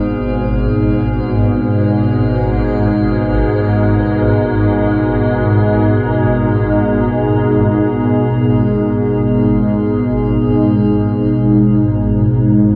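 Unfolding in free time, this dark ambient drone feels cavernous and dark, a fragment taken from a longer piece and set in a minor key on a single sustained chord. Up front, a sweeping, resonant pad holds full-bodied chords, its detuned sawtooth and triangle tones colored by ring modulation, a filter swell and chorus for a bright, evolving shimmer. Beneath it sits a swarming drone, equally forward, built from detuned sine voices in unison with a moving notch and granular grain, tense and evolving under its own reverb. Further back, a metallic, inharmonic drone adds an eerie FM edge, softened by chorus and reverb, and it stops at 10.8 s while the pad and low drone carry on. A synth drone fades in over the first 10.8 s, and the whole recording is bathed in a huge, wet reverb with a 7.3-second tail and the warbling pitch drift of worn cassette tape.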